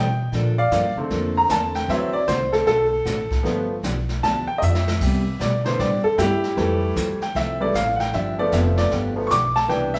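A loping swing feel in 4/4 drives this playful, down-home slice of country western swing, cut from a longer piece. An upright piano takes the solo from the opening through 10.0 s, sitting up front with a bright, brilliant tone and long sustain. Beneath it, a picked dreadnought acoustic guitar adds full-bodied accompaniment while a pizzicato upright bass supplies a woody low end. A jazz brush kit comes in at 0.3 s with brushed snare, hi-hat, crash and a boomy kick, and plays a short fill at 4.6 s. The harmony moves through Bbmaj7, D7, G7, Cmaj7, Fmaj7 and back to G7, and the band sounds like it is playing live together in one room, bathed in a wet, large studio reverb.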